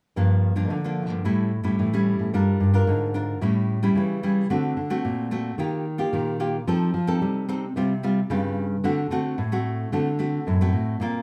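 Two up-front nylon-string guitars open together at 0.2 seconds: one thumb-plucks a classical accompaniment while the other, fingerpicked, carries the bass line. This yearning, bittersweet samba and choro piece moves at 111 BPM in G minor, rocking between Gm7 and A7 before the harmony travels through D7, Ebadd9, F7 and Csus4. Both acoustic guitars share a warm tone, set in a moderate large-studio reverb, in this short passage cut from a longer piece.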